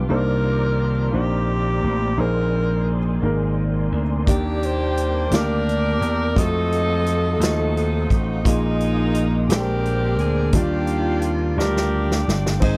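A breathy, raspy alto saxophone carries the melody through this slow, hopeful gospel excerpt in 6/8 at 58 BPM in Eb major, its vibrato gritty yet smooth at the top. A punchy, amped vintage slap bass sits up front from the start, while a concert grand piano plays accompaniment in the background with audible action noise and deep low notes. Very quiet beneath them, a flute-like tonewheel organ holds soft chords through a fast rotary speaker with key click, and a studio string section bows reedy, gut-string chords with light vibrato. At 4.3 seconds an edgy, close-miked saxophone section joins the melody and a swinging big-band drum kit enters with a punchy kick, medium-tuned snare, hi-hat and crash, closing with a fill at 11.6 seconds. The harmony moves from Cm9 through Bb9sus4, Ebmaj7, F7b9, Bb7sus4 and Bb13 to Ebmaj9. The dry, close sound recalls a 1970s studio, giving the uplifting mood an intimate presence.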